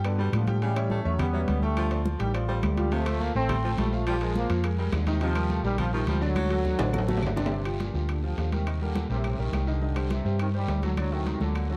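A driving, fiery salsa groove in straight 4/4 is carried by high-tuned, thin-skinned congas and ringing metal-shell timbales sitting in the background, very quiet woody claves, and a raspy, distant guiro that joins at 2.9 seconds. Up front, a round, punchy hollow-body electric bass holds the low end while a brilliant, worn, slightly detuned upright piano fills in the accompaniment. A tight trombone section with light vibrato carries the melody, and a clear, soft-attack baritone saxophone adds a second line until 7.3 seconds, set in light reverb and a dark production in this short cut from a longer piece.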